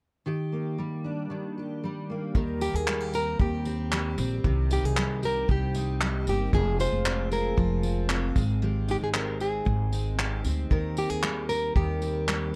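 A bright, small-bodied nylon-string guitar carries the melody up front in this easy-going, heartfelt acoustic pop excerpt, entering at 2.6 seconds over a full-bodied, double-tracked fingerpicked steel-string dreadnought guitar that plays alone from 0.3 seconds. From 2.3 seconds a woody pizzicato upright bass and a cloth-damped, thuddy drum kit with a tight kick, handclaps and tambourine join in, while a picked jumbo steel-string guitar adds delayed arpeggios in the background. The production is dark and warm with little reverb, moving from Ebmaj7 and Eb6 through Cm7, Fm and Abmaj7 before settling back on Eb6.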